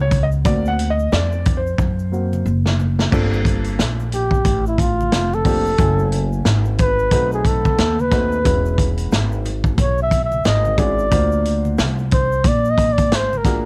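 A warm upright piano opens this cool, smoky jazz-hop excerpt with a short solo over woody, thumpy pizzicato upright bass, while a vintage drum kit with dark cymbals and a punchy kick comes in alongside them. At 1.8 seconds the drums play a fill that leads into the main groove, which carries a lazy swing on the sixteenths. From 4.1 seconds a breathy, close-miked flugelhorn takes the lead with a whispered, intimate jazz solo, its soft attack, scooped notes and light vibrato sitting up front. Very quiet congas and egg shaker, compressed and saturated with hard hands, add texture beneath the kit. The chords move through rich jazz colours, from D7alt and Gm11 through F#m9 and B7b9 to E6, then back to D7alt. The piano, drums and flugelhorn carry a cassette-tape character, and the bass has transformer saturation, all in a dry home recording on cassette.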